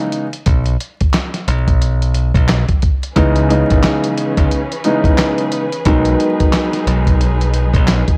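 A dry, gritty recording dusted with vinyl crackle frames this dark boom-bap hip-hop excerpt at 89 BPM in C# minor, swung on the sixteenths. A mellow, vintage grand piano with long sustain and a cassette-tape tint opens the piece, joined by a compressed, sampler-style soul kit of thumpy kick, medium-tuned snare, hi-hat and handclaps with 12-bit grit, while a bright, punchy picked electric bass sits up front from 0.5 seconds. At 3.1 seconds a lush, bowed string section with vibrato and a smooth top slips in quietly beneath, as the harmony moves from C#m7 to G#m7/B.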